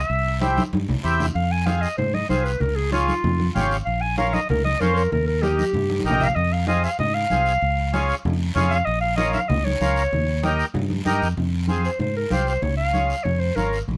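Driving and fiery, this cumbia moves at a brisk 192 BPM in F minor, with a fingered electric bass up front, raspy guiro, ringing medium-tuned congas and a reedy, full accordion supporting a vintage-toned clarinet in classical style. After a brief opening and a fill around 0.6 s, the clarinet takes a solo from 1.4 s to 11.4 s over a cycling Fm, Db, Bbm, Eb progression. A final section begins at 11.4 s, all within light reverb, in this passage cut from a longer piece.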